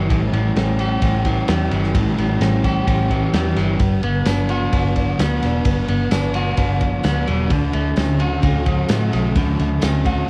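Hazy and wistful, this short shoegaze and dream pop rock cut drifts over a straight 4/4 pulse while the chords move from A7 to Gmaj7 at 3.8 seconds and on to Dmaj7. Up front, an electric guitar sitting at the edge of break-up plays a riff with a slightly broken-up, warm tone, coloured by reverse reverb and a cassette tape haze. Behind it, a dark fuzz guitar adds a thick, distorted riff coloured by analog chorus and tape, while a very quiet twelve-string acoustic shimmers through picked arpeggios, octave-doubled and bright, with audible finger squeak. A vintage foam-muted electric bass gives a round, amped low end, and a loose indie kit of tight kick, medium-tuned snare and ride cymbal sounds like a small room run through tape. A jingly, compressed and saturated tambourine slips into the background at 4.3 seconds, and the whole piece carries the modest booth ambience of a home cassette recording.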